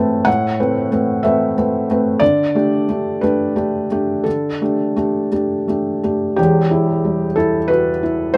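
Neoclassical minimalist piano in E minor, this brief fragment, cut from a longer piece, carries a melancholic, reflective mood at a slow, rubato pace of 55-63 BPM in 6/8. A felt-muted upright piano plays solo throughout its 8.4 seconds, ranging from E1 up to A5. Its tone is soft, mellow and intimate, sitting up front with audible action noise that lends it a natural, close character. The harmony moves from Amadd9 to Dsus4 at 2.2 seconds before settling on E minor as a new section begins at 6.4 seconds. Light reverb frames the piano, though the outdoor setting leaves the sound free of any room ambience.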